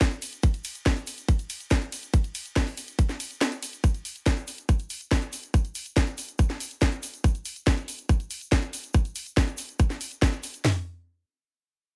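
A layered electronic garage drum kit sits up front with a tight kick, cracking snare, hi-hat and toms, joined by a second produced kit adding ride cymbal, hi-hat and snare, while a grainy, bright acoustic egg shaker stays in the background of this dry, intense and hypnotic trance excerpt, whose opening drop lets the kick fall away from 3.4 to 3.8 seconds.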